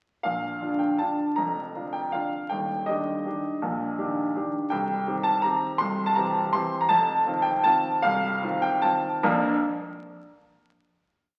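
A classical piano waltz, sparkling and graceful in a flexible rubato 3/4, played solo on a brilliant, up-front baby grand whose single-line melody rides over a waltz bass with short sustain, moving through chords such as Ebmaj7 and C7 to a final Bb chord at 9.3 seconds, all heard through a wet recital-hall reverb and the crackle of a very old 78 rpm record.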